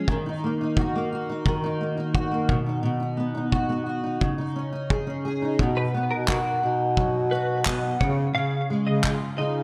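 A fingerpicked steel-string acoustic guitar, dark and double-tracked, opens this heartfelt, carefree acoustic pop excerpt at 87 BPM, joined almost at once by a loose indie drum kit with handclaps and a punchy kick in a pumping room, before a mellow, soft-attacked bass clarinet enters at 5.6 seconds and a clean, direct-recorded electric guitar adds chorused, delayed arpeggios from 5.8 seconds, all set in light studio reverb with bright 1980s-style digital polish over chords moving from D#m through B and C#sus2 to C#add9.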